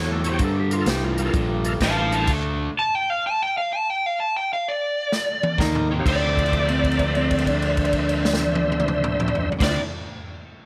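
Soulful and brooding, this swinging electric blues shuffle excerpt sets a bright, overdriven semi-hollow guitar riff and a round, punchy fingered bass against an airy, polished big-band drum kit with a punchy kick, while a compressed, slightly broken-up slide guitar adds a second line, a thick, percussive tonewheel organ with slow rotary speaker, overdrive and chorus vibrato fills in the chords, and an up-front lead guitar through a small cranked amp enters at 1.8 seconds with a warm, overdriven melody, before a drum fill at 5.1 seconds leads into a held note from 6.1 seconds in a small, lightly reverberant room.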